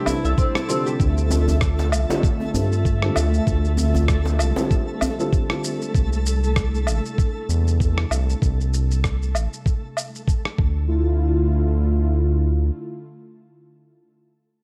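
A gritty, thumpy electronic kick sits up front at 97 BPM in a swung 4/4, joined by compressed woodblock, shaker and rim click, a distant soft-handed djembe with metal rattles, and a deep, round analog bass, in this meditative, mystical organic downtempo excerpt in D minor. A woody, double-strung oud plays brief arpeggios with tape echo at the start, while a felt-muted upright piano adds mellow, intimate accompaniment until 5.9 seconds. Meanwhile, a smooth, detuned analog pad holds chords with chorus, sidechain pumping and a filter sweep until 14.1 seconds, and a sparkling granular texture with an octave-up shimmer glints through the light studio ambience.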